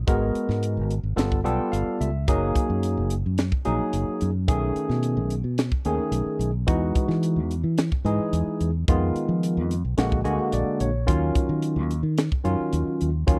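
A straight 4/4 groove from a crisp fusion drum kit, airy and polished with a high-tuned snare and tight kick, drives this slick, nocturnal electric jazz fusion excerpt alongside a fingered electric bass that sits direct and up front. A bright, barky tine electric piano bathed in lush chorus carries the accompaniment through rich chords such as Abm9, G9, B13 and Bbaug7, and adds short fills at 1.2 and 10.0 seconds. The sound is dry and close, like a 1970s studio session in a small room.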